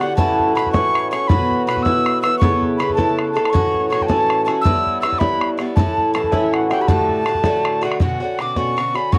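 An airy wooden whistle with a crisp chiff and expressive vibrato carries the melody of this lively, cheerful Celtic jig in 6/8, joined by a shimmering, hammered cimbalom second line, up-front metallic picking from a double-strung Irish bouzouki and a tight, damped, band-limited bodhran, captured in a dry, close 1970s-style studio sound in this brief cut from a longer piece.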